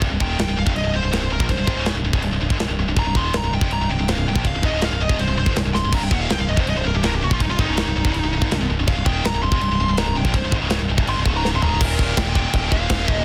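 Epic and aggressive, this 13.2-second heavy metal excerpt in C minor charges at 163 BPM as a bright, double-tracked high-gain rhythm guitar riff sits up front over a growling overdriven picked bass and a tight studio drum kit with china and crash cymbals, toms and a softly clipped kick, while a dark distorted lead guitar solos from 0.2 seconds, drum fills land at 5.7 and 11.4 seconds, and the harmony shifts from Cm to Eb at 11.8 seconds in a dense, heavily limited modern mix with small room ambience.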